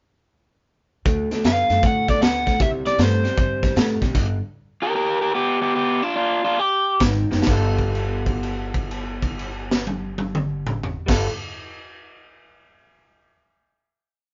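A swung 4/4 shuffle drives this short, soulful and gritty electric blues. A saturated garage drum kit with dark cymbals, a punchy kick and a high-tuned snare sits up front, playing a double shuffle groove, while a woody pizzicato upright bass plays a quarter-note figure and a slightly broken-up, lo-fi electric guitar through a small old amp picks a boogie figure on root, fifth and sixth. A bright, overdriven lead guitar carries motif-based song phrases and continues through the slowing stop from 4.1 seconds. The band returns at 7.0 seconds, and a drum fill at 7.2 seconds leads into a final chord held from 7.5 seconds, all in a live-room sound with light reverb and a rolled-off top.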